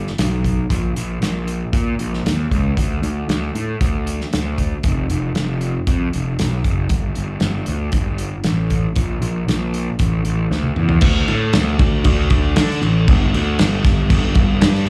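Quiet-loud alternative rock at 116 BPM in a dark, angsty mood, this live club excerpt pairs a growly, overdriven fuzz picked electric bass ranging from F1 to D3 with an up-front, loose indie drum kit of punchy kick, medium-tuned snare, hi-hat, toms and dark crash cymbals with a rolled-off top, heard through the venue's PA with little reverb, and a drum fill at 10.5 seconds leads into a new section at 11.0 seconds.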